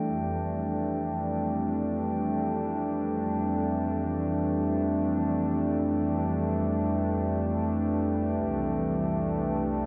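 A vast, echoing cathedral reverb with a long seven-second tail surrounds this short ambient excerpt, cut from a longer piece and moving in free time with a reflective, spacious mood. Up front, an analog pad holds sustained chords from low C2 up to D4 throughout, its detuned sawtooth and sine tones sounding smooth and vintage, with a wave-folded edge, soft attack and a warbling chorus. Far in the background, a glass harmonica sounds a single high G5, glassy, pure and ethereal, easing in with a slow attack and a mid-forward tone. The harmony rests on Fmaj7 from 0.1 seconds before settling onto C at 8.3 seconds. Both parts sound for the full 9.9 seconds, blending into a calm, suspended wash.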